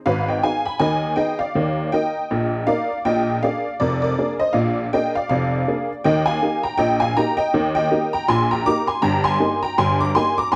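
Jaunty and lively, this short ragtime piano passage, cut from a longer piece, bounces along in 2/4 with a gentle swing on the sixteenth notes. A lone honky-tonk upright piano carries the whole performance from 0.1 seconds to 10.6 seconds, ranging from deep bass notes up into its high treble. The instrument's detuned, jangly voice gives it a vintage character, and it sits up front in the mix with a bright yet smooth edge. The harmony moves from Abm to Eb, then to Bb7, and back to Eb before settling on Eb/G near the 9-second mark. A moderate studio reverb surrounds the piano, and the overall production leans dark and warm.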